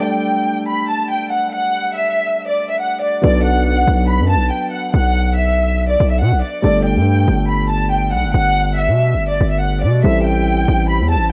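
This short cut from a longer piece has the muffled, homespun character of a cassette recorded in a small room, setting an ominous, cold drill mood over a half-time hip hop feel. A lush symphonic violin section carries the melody up front from the opening, its bowed ensemble tone focused and smooth on top with vibrato and a tape-worn, filtered sheen. Beneath it, a dark concert grand piano plays mellow, intimate accompaniment, its long sustain and deep low end softened by a low-pass filter, with the action noise of the instrument clearly audible. At 3.2 seconds a distorted 808-style bass arrives as the piece moves into its second section, heavy and saturated, with a fast attack, a decaying tail and a noise layer, sitting up front in the mix. The harmony moves from Gsus2 to Bm7 and back to Gsus2 before settling on Am7 at 10.0 seconds.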